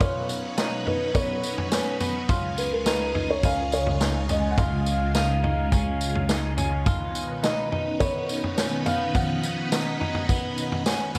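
This ethereal, blissful dream pop fragment at 105 BPM opens with a bright, swirling string machine holding slow-blooming phased chords, hollow-toned semi-hollow guitar arpeggios with subtle chorus, and a vintage drum kit with a punchy kick, medium-tuned snare, tambourine and toms, rolled off up top and placed up front. A soft, boxy felt-muted upright piano carries the melody with audible action noise and diffuse ambient delay until 10.3 seconds. The chords move from Cbadd9 to Db at 2.3 seconds and back at 6.9 seconds, all in a dreamy mix soaked in plate reverb with small room ambience.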